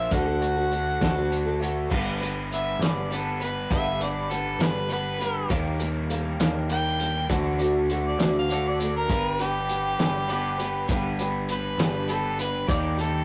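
A bright harmonica opens this short excerpt of nostalgic, open-road folk and heartland rock, arriving together with a woody, boxy old ladder-braced acoustic guitar, a double-tracked overdriven electric guitar riff and a growly, punchy picked electric bass, as a cloth-damped drum kit thuds in with a fat snare, tight kick and dark, muffled cymbals. The pace is an unhurried 67 BPM in a straight 6/8, set in G major and moving through D, G, Ebmaj7 and Dadd9. From 1.9 seconds the up-front harmonica takes a jazz-tinged solo, scooping into notes with a light vibrato. Around 10.3 seconds a very quiet, dark lap steel glides in briefly with fingerpicked slide phrases as a second line. The gritty, lo-fi drums and a wet small-room reverb give the whole a rough rehearsal-room feel with warm saturation.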